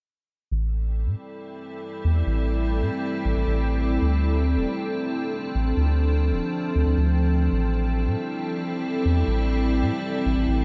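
A huge ambient reverb with a long 4.1-second tail surrounds this eerie, cerebral IDM passage in A minor at 137 BPM, cut from a longer piece. A round, deep analog bass enters at 0.5 seconds, dark and up front with a nasal edge and a filter sweep running through it, and an icy, crystalline glass pad follows at 1.2 seconds, holding airy, detuned chords washed in chorus and its own reverb. The harmony moves from Am7 to Dm7 at 4.0 seconds and returns to Am7 at 7.5 seconds.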